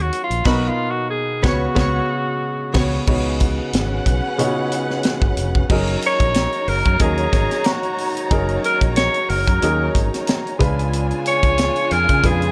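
A bright, vintage-toned alto saxophone sits up front and carries the melody with light vibrato, opening as a solo over band accents through 3.1 seconds in this cinematic, smooth slice of lush 1970s-style soul at 92 BPM with a gentle sixteenth-note swing. Behind it, a distant studio violin section adds an expressive bowed second line with portamento, a baby grand piano supplies natural-sounding accompaniment, and a mellow French horn section holds sustained chords in the background. A round, dark fingered electric bass joins a tight acoustic funk drum kit with a high-tuned snare, while a clean, compressed electric guitar slips in a brief spring-reverb riff at 1.4 seconds, and the harmony moves from Bmaj7 through F#69 to C#7b9 in a small room ambience.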